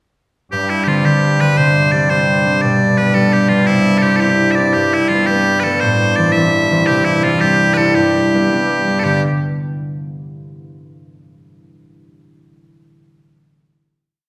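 Lively and rollicking, this short, complete Celtic folk jig moves at 112 BPM in 6/8 with a straight feel in G major, its single section closing on a final chord at 9.0 seconds. Loud, piercing bagpipes carry a continuous, motif-based solo melody in period phrases from 0.5 to 9.2 seconds, while a mellow, fingerpicked concert harp supplies ringing bass notes and chord figures that hold the pulse until 10.4 seconds. Both parts sit up front in a reverberant recital hall, and the harmony moves through suspended and added-note colours such as Gsus4 and Cadd9, passing through Am before settling on G.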